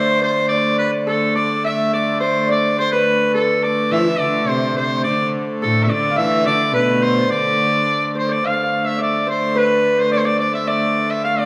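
In a straight 2/4 at 106 BPM, this ancient, mysterious medieval dance, cut from a longer piece, sets a bright, vibrato-laden shawm up front on the melody, with a fingerpicked, ringing Celtic harp adding a second line and a biting, nasal hurdy-gurdy holding an earthy drone beneath. From 3.9 to 8.1 seconds a bowed, fretted viola da gamba with a reedy gut-string tone adds a low second line. The band plays live together in a stone room whose wet reverb gives the shawm a distant, roomy quality, and the tune shifts into a new section at 8.4 seconds.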